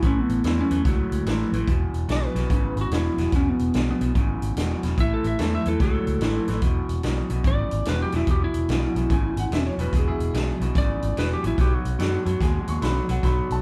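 A dark, slightly broken-up lead guitar carries the melody of this soulful, gritty electric blues shuffle from the first moment, over a twangy, lo-fi riff from a small old amp, a round, foam-muted fingered bass and an up-front vintage kit of hi-hat, punchy kick and snare, the band playing live in one room with light reverb, until a woody, brilliant upright piano adds a second line at 9.1 seconds.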